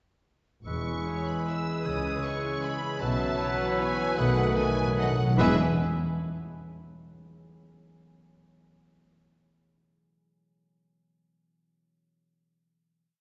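Elegant and sweeping, this short classical ballroom waltz in E major moves in a rubato 3/4 at 139-168 BPM, with most of the orchestra entering at 0.7 s and closing on a final chord at 5.4 s. A lush, vibrato-rich violin section carries the melody with a focused, smooth top, while a second, very quiet and distant violin section adds after-beat and sustained chords from 1.1 s. The violas, entering at the same time, bring an expressive counter-melody with portamento in the background. Cellos and double basses anchor the bass, with the basses doubling the line. A silver, airy flute, a roomy oboe and a clear bassoon hold sustained chords beside mellow, punchy French horns, a tight trumpet section and a dark, soft-attacked trombone section. A fingerpicked concert harp rings out rocking broken chords, and hard-mallet timpani strike single bass notes before rolling through a fill from 4.2 s, all set in a reverberant scoring-stage ambience heard from further back in the room.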